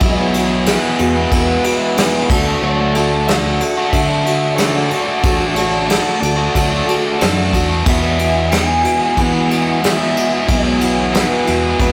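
Jangly and nostalgic, this short excerpt of folk rock and heartland rock moves at 92 BPM in a straight 4/4, sitting in E mixolydian with tuning a touch below standard pitch. A biting, double-tracked overdriven guitar carries the riff up front, colored by spring reverb, while a woody, boxy parlour acoustic with old strings picks out the accompaniment. Beneath them, a fingered electric bass sounds dark, round and punchy, and a soft brush kit with a medium-tuned snare, punchy kick, ride and crash sits close in the mix. A reedy, breathing pedal harmonium holds airy sustained chords in the background, and from 0.1 seconds a lead guitar through a small cranked amp adds a distant overdriven melody. The harmony moves from Eadd9 to D at 2.3 seconds and back to Eadd9 at 7.9 seconds, all captured in a rough rehearsal-room recording with a stone-room reverb and saturated, lived-in character.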